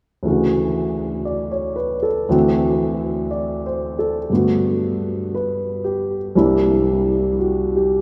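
Bathed in a long, wet church reverb, this romantic and intimate jazz fragment, cut from a longer piece, features a warm concert grand piano placed up front, its deep bass and short sustain carrying a swung accompaniment through Dmaj9, D7, Gmaj7 and C9 from 0.2 to 8.0 seconds.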